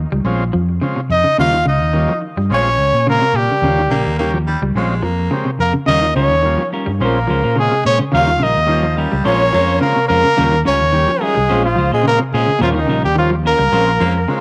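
A lightly swung 16th-note groove at 107 BPM drives this funky afrobeat excerpt in Bb dorian, where a round, up-front fingered bass and bright clean guitar arpeggios colored by harmonic tremolo and tape echo circle a Bbm9 to Eb9 vamp over a buzzy combo organ in the background, while a smooth trumpet with vibrato and tape echo carries the melody from 1.1 s against a growling tenor saxophone second line, a raspy, distant baritone saxophone joins from 3.9 s, and a dark semi-hollow guitar adds stabs from 5.9 s, all in a small room with light reverb.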